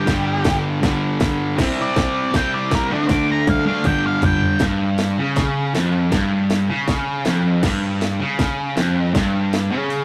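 Rowdy and swaggering, this garage rock excerpt charges along at 159 BPM in a straight 4/4, cut from a longer piece. A bright, double-tracked fuzz guitar sits up front with a picked riff that runs the full ten seconds, while a darker octave-fuzz lead guitar carries the melody above it until 4.6 seconds. The garage drum kit has a layered, produced electronic character, with a tight kick, a cracking snare, tape-tinged tone and crash, hi-hat and toms, and it sits up front too. A drum fill from 3.1 to 4.6 seconds leads out of the opening chords of G5, C5, D5 and back to G5 into a new section that lands on Fsus2. The whole take sounds like a rough rehearsal-room recording, with tube saturation and a moderate stone room reverb giving it a gritty, live-in-the-space feel.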